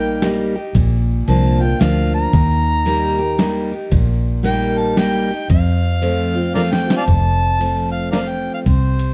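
A swung 3/4 groove sets an easygoing, down-home honky-tonk country mood in this short cut from a longer piece, where a mellow harmonica carries the melody with scooped notes and light vibrato over a bright, up-front picked steel-string acoustic guitar and a round, foam-muted vintage electric bass, while a gritty, pitched-down sampler-style drum kit with a thumpy kick, snare and ride enters at 0.2 s and plays a fill at 6.6 s, all in a dark production with light reverb.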